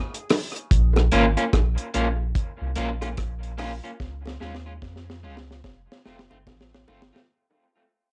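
Dub reggae at 73 BPM in Bb dorian, this short excerpt cut from a longer piece has a deep, hypnotic mood and a 61% 16th-note swing, with a fade-out running through its entire length. A deep reggae drum kit opens at 0.1 seconds with hi-hat, kick, rim click and snare, its sound dry, dark and rolled-off on top, with a tight kick and a high-tuned snare, colored by cassette tape, and a drum fill carries from 4.0 seconds to the close. Tight, high-tuned bongos played with hard hands sit in a small room and trail off into dub echo. A round sine sub bass enters at 0.7 seconds, when the chords begin moving from Bbm to Db and then F, its fast attack and sustained notes given a touch of transformer saturation. Up front, an electric guitar at the edge of break-up adds slightly broken-up picked accompaniment through tremolo, cassette tape and dub echo, the whole home cassette recording carrying a light reverb.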